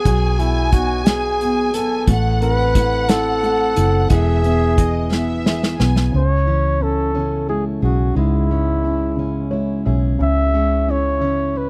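A mellow, close-miked flugelhorn carries the melody up front with a light jazz vibrato and a touch of tape echo, singing tenderly over a slow six-eight pop ballad at 59 BPM. Beneath it, a dark, foam-muted electric bass sits round and punchy, while a felt-muted upright piano adds soft, intimate accompaniment and a gentle fill around 9.2 seconds. A fingerpicked jumbo steel-string guitar with fresh strings spins full-bodied arpeggios in the background. For the opening 6.1 seconds, a lush, smoothly bowed violin section lends a second line, and an airy acoustic kit played with bundle sticks enters at 0.1 seconds to keep time, its punchy kick and medium-tuned snare closing out with a fill just before the chords move to C#m. The dry, close 1970s-style studio sound keeps this heartfelt fragment of a longer piece feeling personal and near.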